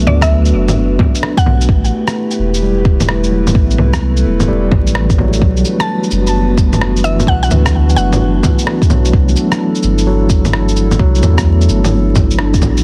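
A dense, heavily limited mix with vinyl crackle and light reverb frames this ghostly, melancholic future garage fragment at 129 BPM, swung on the sixteenths and moving through Bm7, Am9 and C69. A gritty, overdriven tine electric piano with fast tremolo and analog delay and a detuned, moody analog pad with chorus both pump against the sidechain over a round, up-front sine sub bass. Muffled, pitched-down electronic bongos, rim click, shaker and cabasa sit beside a deep layered kick, while a woody, FM mallet-like pluck plays brief melodic phrases from 0.1 and 5.8 seconds before a band accent at 12.4 seconds.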